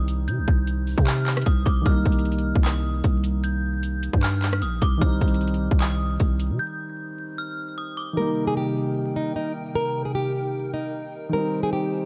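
A dark, mellow concert grand piano and a growling, buzzy 808-style bass open this melancholic, hard-hitting half-time trap fragment at 152 BPM. They are joined by a tape-warm trap kit of hard-clipped kick, metallic hats, handclaps and rim click, and by a ringing, inharmonic FM bell treated with chorus, phaser and tape echo. The bass and drums drop out around 6.6 seconds, and from 8.2 seconds a small, fingerpicked nylon-string guitar carries the melody with tape echo over a hollow, flute-like vintage pad, all in a dry, dark, warm production dusted with vinyl crackle.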